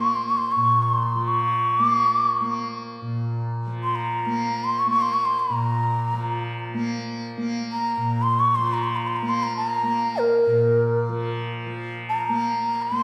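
A breathy, hollow bansuri carries the melody up front, its tongued phrases colored with vibrato and ranging from Bb4 up to a high Db6, in this meditative, introspective Hindustani classical passage cut from a longer piece. Beneath it, a softly plucked tanpura holds a buzzing, shimmering drone between Bb2 and Bb3, and both instruments sound throughout the 13 seconds in free time. A recital hall reverb with a 1.8-second tail gives the performance the resonant air of a church or concert hall.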